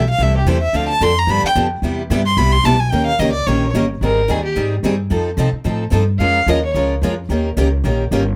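Lively and playful, this acoustic string swing in the jazz manouche style moves in a brisk swung four. A close, up-front violin carries the melody until 3.7 seconds, bowed by one player with vibrato, a soft attack, portamento and an expressive, warm tone. At 4.0 seconds a second bowed violin takes up a supporting line, also up front and shaped with vibrato and sliding portamento. Two picked steel-string acoustic guitars supply the accompaniment throughout: one is a bright, boxy parlour guitar on fresh strings with audible finger squeak, while the other, a full-bodied dreadnought on old strings, sits in the background. An up-front upright bass on gut strings is plucked pizzicato, sounding woody, dark and thumpy beneath the harmony, which moves through chords such as Dm7, G7, Abmaj7 and Bbm7. Light reverb surrounds the group, and the passage is cut from a longer piece.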